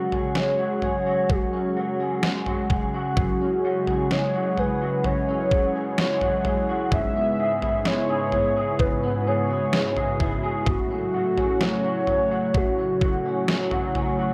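A warbling, detuned lead carries the melody through this hazy, melancholic dream pop excerpt, its soft attack smeared by chorus, vibrato and dub echo. Beneath it, a swirling sawtooth pad holds sustained chords through phaser and chorus, moving from F#sus2 to C#m7/G# at 6.9 seconds and A6 at 10.7 seconds, while a twangy, slightly broken-up electric guitar through a small old amp picks arpeggios with analog chorus and dub echo. Up front, an overdriven, detuned 8-bit drum machine plays a thumpy kick, snare and toms, and a delicate, bell-like celesta sits barely audible from 0.4 to 11.1 seconds in the echo-heavy, lightly reverberant mix.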